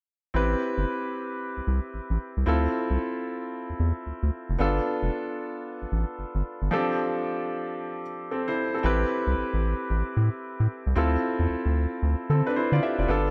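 From 0.3 seconds, a clear, intimate concert grand piano with audible action noise plays accompaniment over a round, deep analog bass that carries a moving notch filter and sits up front. This confident, slick R&B cut in A minor moves at 113 BPM with a swung sixteenth-note feel, cycling through Am7, Dm7, G7 and F6 before a second section returns to Am7 and Dm7 at 8.8 seconds. A moderate plate reverb and bright 1980s-style digital production give the excerpt a glossy sheen.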